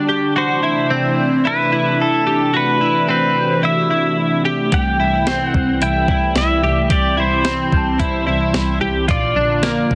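A straight 4/4 pulse at 110 BPM carries this floating, ethereal dream pop excerpt, cut from a longer piece. From the start, a warm, clean pedal steel guitar sings the melody through delay, with slide and volume swells, while a twelve-string electric guitar picks bright, twangy arpeggios with analog chorus and delay. Beneath them, an up-front analog pad holds swirling, detuned sawtooth chords through phaser and chorus, moving from Amadd9 to C6 and then Bbmaj7. A delicate, bell-like celesta sits in the background, heard briefly near the opening and again from 7.4 seconds. At 4.7 seconds a distant bowed double bass enters with smooth vibrato, alongside a clean 12-bit drum machine with a thumpy kick, medium-tuned snare, hi-hat and tambourine. A moderate recital hall reverb surrounds the parts, and the master is dense and heavily limited.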